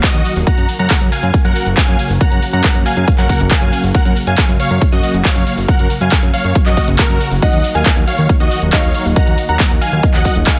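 A straight pulse drives this soaring, euphoric uplifting trance passage, cut from a longer piece, with an overdriven, punchy, layered electronic kick sitting up front. An analog drum machine adds crash cymbal, handclaps, hi-hat and shaker, overdriven and re-recorded in a large room, its hats, percussion and cymbals pumping with sidechain compression. Beneath them a fat, thick analog bass built from detuned sawtooth and square waves, with a plucky filter and fast attack, pumps in the same way from 0.1 s. The huge, bright supersaw lead carries the melody in detuned unison, compressed and sustained, pumping and trailed by digital delay, while a very quiet, punchy supersaw stab with a filter sweep supports it as a second line. The harmony moves from G-flat to E-flat minor at 7.4 s, where a clear, natural concert grand piano with deep bass and long sustain enters in the background, washed in dub echo, for a dry, close and loud overall sound.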